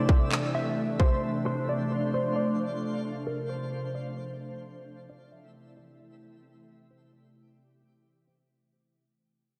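Ethereal and hazy, this atmospheric cloud-rap excerpt moves at 132 BPM in a half-time feel, with a glassy, warbling FM pad holding up-front sustained chords over Am, Dm7 and back to Am while a clean, compressed electric guitar picks a melody through analog chorus, tape echo and a low-pass filter. A twinkling granular texture adds a sparkling octave-up shimmer, and a trap kit of handclaps and a hard-clipped kick appears only from 0.1 to 1.1 seconds. The dreamy mix is soaked in lush hall reverb, with a filter sweep and a fade-out running across the whole 8.5 seconds.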